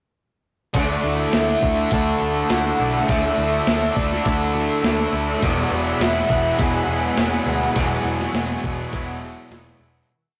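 Blissful and hazy, this short shoegaze and dream pop rock piece moves at 103 BPM in D lydian, with a single verse that shifts from Dsus2 to Eadd9 at 5.4 seconds before fading out from 7.8 seconds. An up-front gated 80s digital drum machine with a thumpy kick and gated-reverb snare drives the big groove alongside a dark, foam-muted electric bass playing eighth notes. Around them sit a bright, double-tracked distorted guitar with ringing chords, a thick fuzz guitar and a scooped, twangy electric guitar both strumming chords with whammy-bar dips, a shimmering fingerpicked twelve-string acoustic with slapback echo, a warbling sawtooth pad with chorus, and a reedy FM lead with chorus, tremolo and vibrato spinning motif-based phrases, all in a rough rehearsal-room recording with stone-room reverb and saturation.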